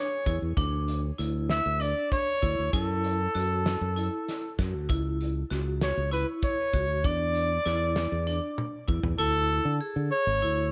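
A roomy trumpet melody with digital delay and a metallic, hard-mallet vibraphone arpeggio open this driving, intricate excerpt of progressive band music in 7/8 at 195 BPM in D lydian, joined at 0.3 seconds by a growly, up-front fingered electric bass and a loose indie drum kit with a fat snare and punchy kick whose fill ends at 9.2 seconds, as the chords move from Dsus2 through F#m7 and C#m to Amaj7/D under a worn, warbling cassette-tape sheen and light small-room reverb.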